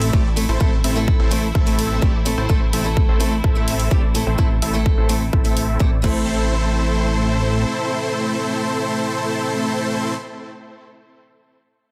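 A huge, detuned supersaw riff sits up front in this euphoric, powerful slice of festival progressive house at 127 BPM in A minor, its filter sweeping and tape echo trailing as sidechain pumping breathes through it, the fat analog bass, the boxy picked ladder-braced acoustic guitar with its finger squeaks, and the lush bowed strings in the background. A punchy, layered electronic kick drives the groove with crash and hi-hat from the big-room kit until both drop out at 6.1 seconds, and the bass stops at 7.7 seconds, leaving the supersaw, guitar and strings to carry the closing section over a single A minor chord. The sound is dense and heavily limited, with light reverb and digital ambience.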